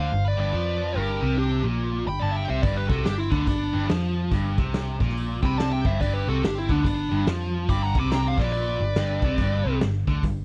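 A biting, double-tracked overdriven guitar sits up front, grinding out a low riff in G major that gives this raunchy, gritty blues rock and southern rock power-trio cut its backbone. Above it, a bluesy distorted lead guitar carries the melody while a nasal second lead, voiced through a parked wah, adds a second line lower in the mix, both dropping out at 9.8 seconds. A vintage, foam-muted picked electric bass lays down a round, punchy low end beneath the riff, all of it resting on a single G chord throughout. The raw garage drum kit enters at 2.6 seconds, with a punchy kick, medium-tuned snare and hi-hat, its smooth, rolled-off top heard within a bright stone room. The swung 142 BPM groove in 4/4 is captured dry and close, like a 1970s studio session, in a dark-toned excerpt cut from a longer piece.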